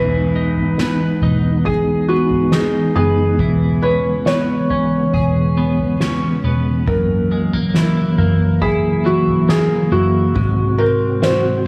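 Bathed in a lush hall reverb with a small-room ambience, this hazy, haunting dream pop excerpt drifts at 69 BPM in C# dorian, moving through Emaj7, C#m7/E, F#7 and G#7. Up front, a soft, intimate felt-muted upright piano carries the melody through a digital delay, while a flute-like tonewheel organ with key click, chorus vibrato and a fast rotary speaker holds sustained chords. A clean, compressed twelve-string electric guitar picks arpeggios through lush chorus and delay, a dark, round, foam-muted bass sits in the background, and a soft-mallet drum kit with a fat snare, boomy kick and toms plays from 0.6 to 11.4 seconds.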